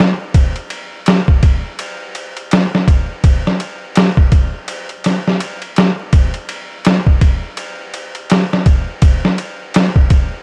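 A loping 83 BPM groove in 4/4, swung at 59% on the sixteenths, carries this cinematic, melancholic trip hop fragment from a longer piece. A sampler-style drum kit plays throughout, up front and pitched down, with a thumpy kick, a medium-tuned snare and a ride cymbal, all compressed and roughened by vintage 12-bit grit as if re-recorded in a small room. The sound is dry, with little reverb, and a layer of vinyl crackle sits over the beat.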